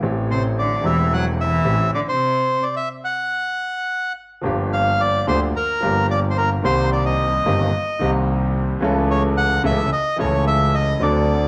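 A melancholic, tense tango in 4/4 at 110 BPM opens with an up-front grand piano and a clear, bowed double bass with light vibrato, played with rubato feel. From 0.3 s a reedy, dark and airy bandoneon carries the melody up front while a distant, expressive bowed cello adds a warm second line with vibrato, portamento and a soft attack until 2.6 s. After a stop from 2.2 to 4.4 s, the music settles into G minor over Gm7, Cm7 and A/C# chords in this excerpt from a longer piece, all set in a moderate echo-chamber studio reverb.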